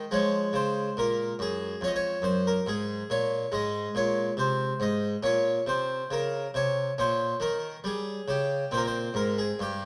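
The rhythm moves freely in 4/4, the pulse bending with a rubato feel that gives this classical, baroque-style suite movement a grave and solemn bearing. A solo harpsichord in the Flemish style carries the whole passage from 0.0 to 9.9 s, its plucked tone full and sounding on two sets of strings, placed up front. Its range stretches from F2 up to Eb5, and the harmony passes from Db through Abadd9, Bbm and Gdim/Bb before arriving on a bare C5. A moderate recital hall reverb with a 1.4-second decay surrounds the instrument, and the production leans dark. Cut from a longer piece, it offers a brief, weighty glimpse of a larger movement.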